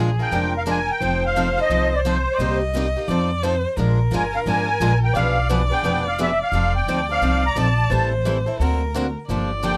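Jazz manouche with a lively, charming swing, led from 0.2 s by a reedy, shimmering musette accordion melody over a smooth, expressive bowed violin second line rich in vibrato and portamento, two bright picked acoustic guitars in accompaniment (one boxy, the other full-bodied with audible finger squeak), and a growly, woody pizzicato upright bass sitting up front, captured by close, detailed microphones with light reverb in this short cut from a longer piece.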